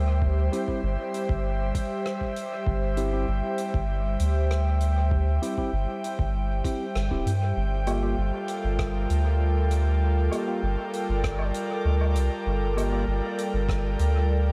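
Spacious and hazy, this ambient dub fragment in 4/4 rests on a breathy, chorused pad with a grain of vintage sampler grit and a round, deep sub bass sitting up front. A muffled, overdriven electronic kick thumps beneath tine electric piano stabs sent through dub echo, while a soft-mallet kit of hi-hat, rim click and woodblock sits quietly in a natural hall. The band accents together around 7.0 seconds before the harmony moves from C/G to Gm7, and a reversed, granular texture swells in the background from 9.4 seconds.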